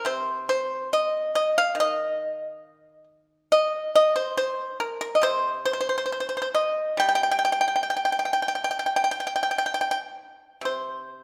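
A solo pipa carries this short Chinese traditional piece, heard from 0.0 to 11.2 seconds as a passage cut from a longer work. Played with fingerpicks, the instrument has a percussive, up-front attack and a warm acoustic body, its own sound close and dry even as the recital hall around it adds a reverberant tail of about 1.7 seconds. The playing spans from C3 up to G5 and moves in a free, rubato feel around 69 BPM in 4/4. The mood is contemplative and full of longing, with the resonant church or concert hall setting lending the lone strings a sense of space and stillness.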